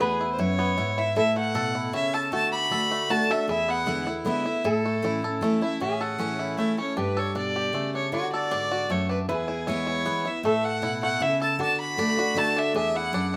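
Driving and rustic, this bluegrass excerpt in three moves through two passes of the same section, with a dark, woody fiddle carrying the melody up front with light vibrato. A bright, full-bodied picked steel-string acoustic guitar shares the foreground as accompaniment, while a twangy, percussive banjo adds arpeggios. A nasal, metallic lap resonator guitar played with slide sits in the background as a second line, all in a moderate studio reverb.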